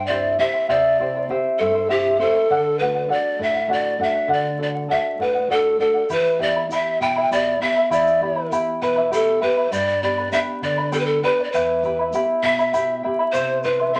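A breathy bamboo pan flute with vibrato and a chiffy, crisp attack carries a wistful, melancholic melody up front in this 6/8 Andean folk piece, over a shimmering fingerpicked charango with double strings and a dark, full-bodied nylon-string guitar whose thumb-plucked bass shows the odd finger squeak, while a grainy tube shaker joins in the background at 6.1 seconds, all set in a wet studio reverb with vinyl crackle.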